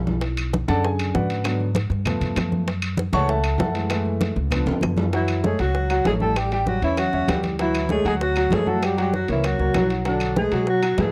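A thumpy, woody upright bass and a drum fill open this driving, fiery Afro-Cuban jazz excerpt in F# minor at 195 BPM, where tight high-tuned bongos, bright congas, ringing distant timbales and woody background claves propel a warm, up-front grand piano solo until a breathy, whispered alto saxophone melody arrives at 5.2 seconds over a mellow background trombone line that enters at 5.1 seconds, all within a dry, close 1970s-style studio sound.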